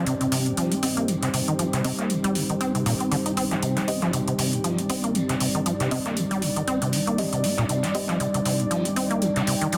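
A squelchy, resonant sawtooth acid bass riff sits up front in this trippy, driving acid house excerpt, over a moody, detuned analog pad carrying a filter sweep, soft wave-folded chord stabs with tape echo, a blurred granular cloud pad, metallic electronic hi-hats re-recorded in a large room, and a dry, airy funk kit of hi-hat, high-tuned snare and tambourine tucked in the background, all set in a moderate spring reverb with a dense, heavily limited master.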